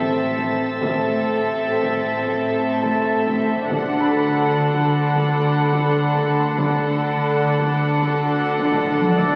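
Heard through the crackle of a very old 78 rpm record and a wet scoring-stage reverb, this mysterious, eerie suspense film cue in 5/4 moves from Am to D as a floating, sul tasto violin section carries the melody over a darker violin line, soft viola accompaniment, and very quiet cello and double bass sections, while a very quiet, glassy glass harmonica holds sustained chords, a woody soft-mallet marimba turns a rustic riff in the background, a mellow concert harp rings, high violins add an intimate texture, and a distant taiko ensemble enters at 0.4 seconds before a drum fill at 8.7 seconds.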